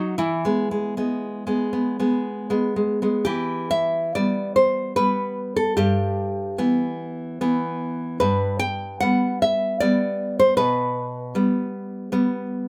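Sunny and warm, this romantic solo classical guitar passage, cut from a longer piece, is a bright, fingerpicked nylon-string guitar sitting up front in 3/4 with rubato, with its harmony turning from an E chord to E minor at 3.3 s and moving through G toward G/B, all heard live in a small room with moderate reverb.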